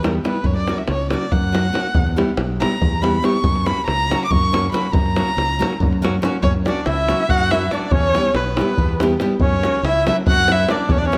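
This Balkan folk excerpt, in the manner of a Balkan wedding band, races along at 281 BPM counted in eighths, in a straight 7/8 and in F# phrygian dominant, with a restless, virtuosic mood. A single bowed violin sits up front with a dark, nasal, boxy tone, its vibrato and portamento making the melody sound expressive as it takes a solo over the band for the first 6.4 seconds. Underneath, a fingerpicked classical nylon-string guitar gives full-bodied acoustic accompaniment. A modern fingered electric bass sounds bright and direct, and a davul supplies tight, vintage, band-limited percussion. At 6.4 seconds a reedy, mid-forward accordion joins with a second line as the harmony keeps moving between F# and Em. A moderate scoring-stage reverb wraps the ensemble in its ambience.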